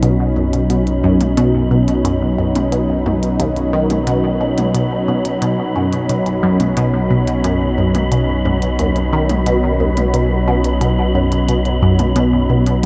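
A wet plate reverb and heavy echo wash over this luminous, expansive excerpt of sequencer-driven ambient space music at 89 BPM in B major, its top end dulled to a soft haze. A bright, up-front pad with chorus holds sustained B chords while a squelchy, ring-modulated blip pluck cycles a riff through phaser and analog delay, anchored by a round, deep analog bass on B1. A faint kit of clicky hi-hats and toms echoes in the background, and a breathy, wind-like tuned noise texture fades in from 0.0 to 12.9 seconds.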